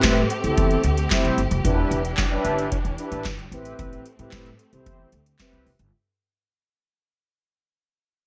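Bathed in digital ambience and fading out across its 5.9 seconds, this funky, late-night fragment of early-eighties boogie funk sets a booming analog drum machine up front, with its deep kick, crisp snare, metallic hi-hat and handclaps soaked in gated reverb, alongside a woody, thumpy pizzicato upright bass, round and dark synth brass with chorus, and a studio string section sustaining bowed chords with vibrato and portamento, all moving from Am9 to Em7 and back.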